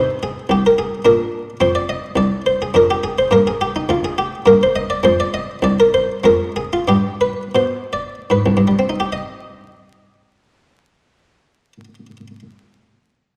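Introspective and solemn, this short cut from a longer baroque-style suite movement in C minor and 3/4 has a solo buff-stop harpsichord playing with rubato at a tempo ranging between 72 and 109 BPM, easing into a slowdown from 4.2 to 9.1 seconds before a new section begins at 9.1 seconds. The Italian-style instrument sounds muted and lute-like, close-miked and up front, spanning C2 to Eb5 with tuning at A4 = 438 Hz, and it falls silent at 12.4 seconds. A moderate recital hall reverb surrounds it, and a layer of vinyl crackle gives the recording an aged quality.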